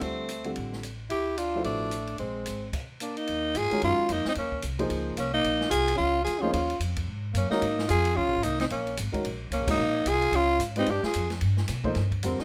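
A raspy, growling tenor saxophone carries the melody up front in this spiritual, cool modal jazz excerpt at a swinging 221 BPM, settling into Eb dorian from 3.3 seconds, with a breathy, subtone alto saxophone tracing a mellow second line until 11.3 seconds, a woody upright piano comping, a pizzicato upright bass with steel strings, and an open acoustic drum kit of dark cymbals and a boomy kick in a small room, plus a band accent at 9.7 seconds, all under light reverb.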